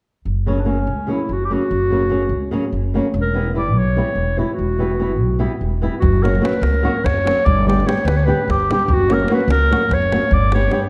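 Balkan folk in free time, a virtuosic, restless fragment of a wedding-band piece, where a vintage classical-style clarinet carries the melody up front over boxy, thumb-plucked flamenco guitar with fresh-string finger squeak and a woody, growly pizzicato upright bass, until a tight, close davul enters at 6.0 seconds, all set in a dark, warm production with a wet recital-hall reverb.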